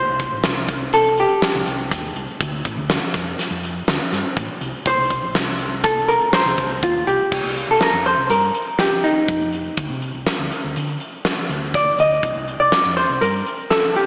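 A clean, dark hollow-body jazz guitar carries the melody up front, its tone doubled by slapback echo and a digital delay as it moves between Eb4 and Eb5. This is a driving, brooding progressive instrumental in 5/4 at 122 BPM, played with a straight feel in C dorian, and it is a cut from a longer piece. A huge arena drum kit joins at 0.2 seconds with a fat snare, punchy kick, crash cymbal and hi-hat, sounding polished and airy while sitting close in the mix. Beneath them, a round, amped short-scale electric bass played with the fingers holds the low end from A1 to D3 until 13.4 seconds. The harmony moves from chordless passages and a Dm chord into C7(no3), Csus2 and C5 in the second half. A lush hall reverb with a 2.1-second tail surrounds the band, giving a big arena sound that also carries a small-speaker character.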